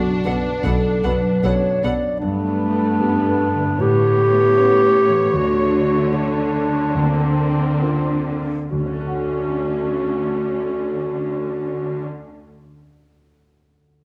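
Cinematic, emotional film score for orchestra in D major, moving and hopeful, played rubato at 65-80 BPM in 4/4 and slowing from 0.6 to 8.7 seconds through chords such as Bm7, Gadd9 and Bbadd9/D before settling on Dmaj7. An up-front solo clarinet carries a classical-style second line over a dark, mellow baby grand piano with short sustain and ringing, fingerpicked harp arpeggios in the background, while smooth violas and rich, lightly vibrato cellos hold the accompaniment and bass. Lush violin sections and a close, expressive double bass section sound only briefly near the start, up to 1.9 seconds, and the whole is set in a moderate scoring-stage reverb.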